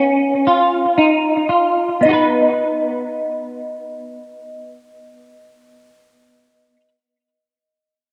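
Drenched in a plate reverb with a 3.0-second tail and an echo-heavy mix, this short dream pop fragment, cut from a longer piece, floats in an ethereal, blissful haze. At a slow 57 BPM in 4/4 with a straight feel, it sits in B lydian, and the tempo eases back over the first 2.0 seconds. Up front, a clean, dark semi-hollow electric guitar plays fingered arpeggios between B3 and B4, its hollow-body tone colored by ensemble chorus and analog delay. Above it, a soft FM synth bell carries the melody from D#5 to G#5, with a fast attack, a decaying body and a long release; its pure, mellow voice shimmers through chorus, phaser and analog delay and sits quieter in the blend than the guitar. The harmony rests on C#add9 before settling onto B at 2.0 seconds, and the bell drops out at 6.8 seconds, just ahead of the guitar.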